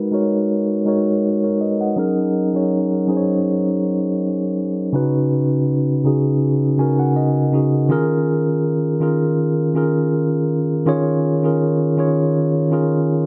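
Sensual and late-night, this R&B piece, cut from a longer work, moves at an unhurried 81 BPM in 4/4 with a light 54% swing on the sixteenths, set in Eb minor. A single mellow tine electric piano carries the whole recording alone, sounding clean and up front, as if heard through its own built-in speakers, and ranging from Db3 to Ab5. Its harmony moves from Abm7 to Gb69 and Db9sus4, with a filter sweep shaping the sound through the opening passage, then settles onto Eb9sus4 when a new passage begins at 7.9 seconds. Just before that change, the piano adds a short fill starting at 6.4 seconds. Light reverb and a dark, warm, low-pass-filtered production give the playing an intimate glow.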